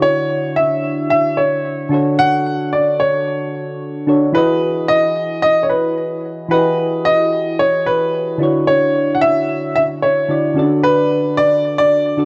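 A polished grand piano carries the melody up front, its present, short-sustained notes trailed by a delay as it moves between B4 and F#5. This is a relaxed amapiano fragment at 111 BPM in a straight 4/4, cut from a longer piece and lasting about 12.2 seconds. Underneath, soft synth keys with an electric-piano character supply the accompaniment from D3 to D#5, their round, full-bodied tone mixing triangle and sine colours with fast-attack, decaying notes, a filter sweep, and a chorus and phaser shimmer. The harmony moves from Dmaj9 through Dmaj7 and Emaj9, returning to Dmaj9 before settling on Bm7/D around 10.6 seconds. A moderate plate reverb surrounds the pair, and the whole recording has the worn, warbling pitch drift of old cassette tape, giving the relaxed mood a warm haze.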